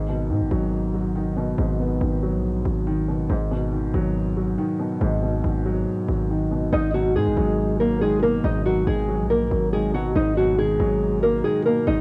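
Hip hop with a dark, hard-hitting half-time feel, cut from a longer piece, opens on a break where a boxy, mellow concert grand piano, filtered and tape-worn with audible action noise, sits on a G#m7 chord over a punchy, heavy 808-style bass with a decaying sine body, until a thumb-plucked nylon-string guitar carries the melody through analog delay from 6.7 seconds, all in a small, home-recorded cassette room.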